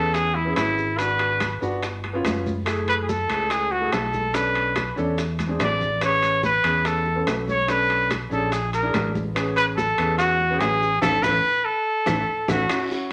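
A studio reverb lends this short cut from a longer Afro-Cuban jazz piece a glossy sense of space, and the tuning sits at A4 = 437 Hz. At 144 BPM in a straight 4/4 in A major, the mood is sophisticated and lively, with a clear, up-front trumpet carrying the melody with light vibrato in a jazz solo style. Beneath it, a concert grand piano accompanies with warmth, intimacy and audible action noise, while a punchy, direct fingered electric bass gives the low end a bright edge. The percussion sits further back: ringing metal-shell timbales, thin-skinned congas played with soft hands, round low-tuned bongos kept very quiet, grainy maracas and woody, distant claves. The harmony moves through colourful extended chords such as G7#11, Bm9 and Eaug7, with drum fills at 5.4 seconds and near the close, where a band accent arrives before a raspy guiro slips in at 12.7 seconds.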